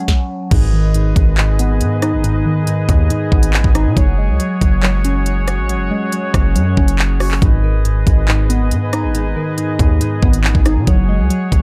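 A distorted 808-style bass carries the low end of this tense, menacing drill piece, cut from a longer work, its saturated, heavy tone with a noise layer and fast attack sitting up front from 0.5 seconds onward. The electronic drum kit is equally forward, with a knocking kick, sharp snare, crisp hi-hats, handclaps, rim clicks and crash cymbal in a half-time feel. At the very start, a delicate, bell-like celesta, sweet yet slightly out of tune and dressed in tape echo, sounds briefly in the background around a short stop. Glassy digital keys with chorus and a low-pass filter carry the accompaniment throughout, with a filter sweep running across them until 7.4 seconds, while a distant, roomy woodwind section holds clear sustained chords with light vibrato in a classical style. The gritty hardware recording stays dry, with little reverb.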